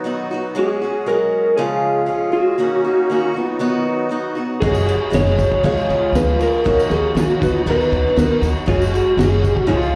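Folk rock with a heartland rock lean, this jangly, open-road excerpt from a live club gig opens with a boxy, picked acoustic archtop guitar and a reedy, shimmering musette accordion, joined at 0.6 seconds by a slightly broken-up electric slide guitar carrying the melody with slapback echo, before a cloth-damped, muffled drum kit with a fat snare, a woody, thumpy upright bass, a very quiet, brilliant grand piano and a jingly tambourine in the background all come in at 4.6 seconds over chords moving from F#sus2 through C# and D#m7 to B/D#.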